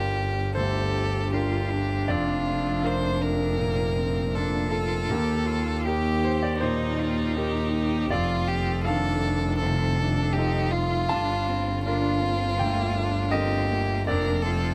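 Rubato 4/4 at 80 BPM carries this melancholic, fragile neoclassical excerpt in G minor, where a smooth bowed violin with vibrato sings the melody up front over an intimate concert grand piano with audible action noise and deep bass. A single bowed cello adds a second line in the background from 0.6 s, and a rich bowed double bass holds the bass line. From 0.9 s, a very quiet, warbling tape-like pad with chorus and a vintage, lo-fi character sustains chords through Gm7, Bb/F, Eb6 and F7, all captured in a dry, detailed close-miked recording.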